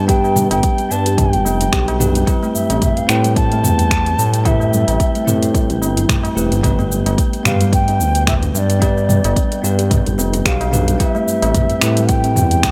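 Organic downtempo with a meditative, hypnotic pull and a lightly swung feel, this excerpt circles between G and Am7 as a distant, reedy bansuri with vibrato carries the melody over bright, bell-like electric piano chords that pump and echo with delay. A woody kalimba plucks delayed arpeggios in the background, a smooth sawtooth-and-triangle synth bass pumps prominently beneath, and an airy, wind-like noise layer drifts faintly behind with its own reverb. An overdriven electronic kick anchors a deep house kit of metallic hats, cabasa, finger snaps and toms, re-recorded in a large room, while a high-tuned, ringing tabla sits quietly far back in a mix touched with light reverb.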